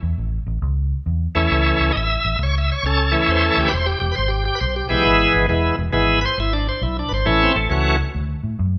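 Laid-back and soulful, this brief blues excerpt swings at 135 BPM in A major, with a dark, round, foam-muted fingered electric bass carrying the low end from the start. At 1.3 seconds a bright tonewheel organ joins in, shouting and lightly overdriven through a slow rotary speaker with audible key click, stopping at 8.0 seconds. The chords move from A to E and back to A before touching D, and the band plays live in one room with a moderate large studio reverb.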